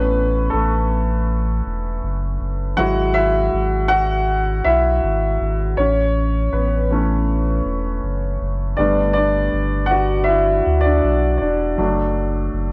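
Emotional and heartfelt, this pop ballad moves at a steady 80 BPM in a straight 4/4, tuned slightly high to A4 = 443 Hz, and is cut from a longer piece. A clear, open baby grand piano sits up front and carries the music from 0.0 to 12.7 seconds, its long sustain letting each chord ring between E3 and F#5. Beneath it, a deep, round sub bass with a sine-like tone and fast attack holds sustained notes from E1 to D2, also placed up front. The harmony moves from A to Eadd9/G# at 2.8 seconds, back to A, then to Gadd9 and D/F# at 11.8 seconds. Light reverb and studio ambience surround the performance, while a worn cassette-tape quality adds a warbly pitch drift to the whole recording.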